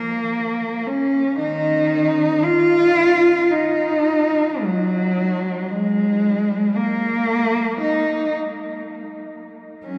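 In free time, a lone bowed cello sings a lyrical, nostalgic classical line with expressive vibrato and portamento, its warm tone ranging from Eb3 to F4 and heard from a distance inside a wet cathedral reverb that rings for 6.2 seconds throughout this 10-second fragment of a longer piece.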